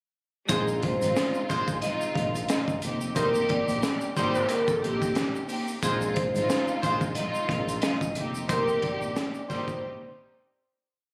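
Moody and tough, this short boom-bap hip-hop piece rides a swung 90 BPM groove in 4/4, moving between Bb9sus4 and F9sus4 chords. A crunchy, gritty breakbeat kit sits up front with a punchy kick, a high-tuned backbeat snare and hi-hats, joined by a mellow synth bass holding a deep, sustained looped line. A vibraphone struck with hard mallets carries a short looping melody with a metallic ring and slow motor vibrato, treated with tape echo, while a lush, woody studio string section plays chopped chords repeated like a sampled loop. A clear, jazz-style trumpet section adds short echoed stabs, and a grainy tube shaker ticks sixteenths in the background. The hook comes through light club reverb as if caught on a phone in the room, fading out from 8.5 seconds before a brief break at 9.8 seconds.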